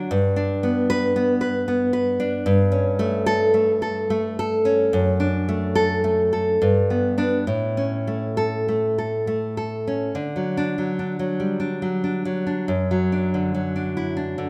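Set in a moderate concert hall reverb, this short passage from a longer romantic piece for solo classical guitar has a tender, sunny mood, with a single up-front nylon-string guitar, full-bodied and fingerpicked with audible finger squeak, moving through a rubato feel in 3/4 over chords from G and A7/G to D/F# before settling onto D at 10.1 seconds for a new section.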